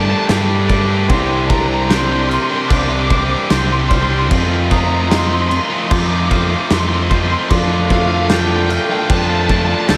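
Post-rock at 75 BPM in 4/4 with a straight feel, this melancholic, cathartic passage in C dorian is cut from a longer piece and carries a big arena sound bathed in lush hall reverb. A dark, distorted lead guitar sings a bluesy melody over the top, its line thickened by slapback and tape echo, while two bright, picked distorted guitars grind out a riff in the background, one overdriven and one tight, both touched with slapback echo. Up front, a growling picked electric bass sits round and punchy with overdrive, and a loose indie drum kit enters at 0.3 seconds with a punchy kick, medium-tuned snare and dark crash cymbals in a pumping, gritty studio room with a rolled-off top. Beneath the rock weight, a glockenspiel played with soft plastic mallets rings out bell-like arpeggios with slapback and tape echo, a very quiet clean, twangy electric guitar plays its own fingered arpeggios, and a reedy, breathing pedal harmonium holds sustained chords. 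The harmony moves from Gsus2 to Csus2 at 1.1 seconds, then through F7sus4 to Dm/F, keeping the mood suspended and melancholic.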